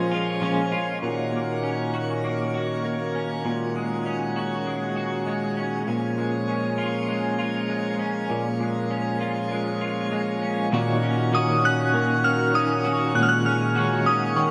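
A brilliant, full-bodied pipe organ sits up front through the whole cut of this melancholic, ethereal dream pop piece at 99 BPM, holding sustained Bbm7, Ebm7/Bb and Ab7sus4/Bb chords beneath a dark, fingered semi-hollow guitar whose arpeggios drift in the background through ensemble chorus and analog delay. A bright, picked semi-hollow guitar with tremolo and lush chorus adds accompaniment, returning at 10.7 seconds. After a brief glimpse at the opening, a glassy, warbling FM bell melody with chorus, tremolo and delay returns at 11.3 seconds, and a long hall reverb soaks the dreamy mix.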